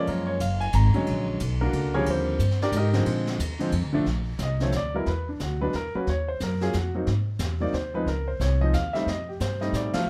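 A dry excerpt of playful, sophisticated jazz piano trio swinging at 180 BPM in 3/4, where a natural, up-front baby grand carries the melody and solos through the first 4.1 seconds over a woody, pizzicato upright bass and a distant, roomy brush kit with dark cymbals and a high-tuned snare, moving through lush chords such as Gbmaj9, Bb7alt and Dbmaj9 before the band hits an accent at 9.9 seconds.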